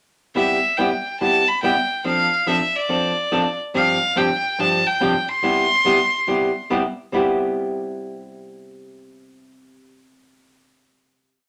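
A clear, earthy fiddle with light vibrato carries a playful, down-home country melody built on song-like motifs until 6.7 seconds, over a dark, clean hollow-body electric archtop guitar picking swung four-to-the-bar rhythm through Cmaj7, F6 and G7sus4 before ringing out on a final chord that closes the whole piece in a wet studio ambience.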